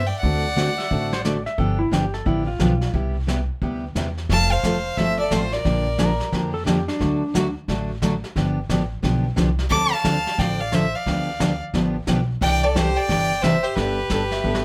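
Western swing country at 177 BPM in a swinging, playful 4/4, where a biting, up-front bowed fiddle with plate reverb carries the melody over an earthier second fiddle line, a woody, thumpy pizzicato upright bass, a full-bodied picked dreadnought acoustic guitar, and a vintage brushed drum kit with a rolled-off top and punchy kick, while a twangy clean lap steel with volume swells slides in at 0.8 s, a drum fill arrives at 14.4 s, and everything sits in a moderate club room.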